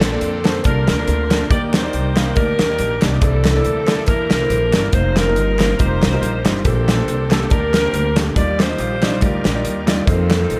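Jubilant and uplifting, this swinging gospel excerpt puts a bright, close-miked saxophone section with light vibrato up front on the melody, bathed in plate reverb, over a woody, growly pizzicato upright bass and a small-room acoustic drum kit of punchy kick, snare and hi-hat, while a clear grand piano with audible action noise sits in the background, a very quiet, lightly overdriven tonewheel organ holds sustained chords through a slow rotary speaker, and crisp, distant handclaps ring out in a large room.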